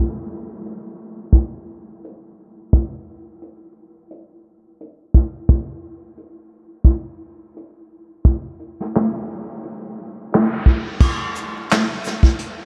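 This is a cosy, mellow hip hop excerpt built entirely on a vintage brush drum kit, with a gently swung 16th-note feel in 4/4. The kit comes in at 0.3 s and runs to 12.6 s, bringing kick drum, snare, hi-hat, crash cymbal, shaker and handclaps together. Played with brushes in a natural studio room, it has a punchy kick, a medium-tuned snare and dark cymbals. The drums sit up front, with a rolled-off top and an acoustic character. A light reverb, vinyl crackle and a low-pass filter give the recording a dusty, lo-fi sheen, while a filter sweep runs through the opening stretch before a short new section arrives at 11.0 s.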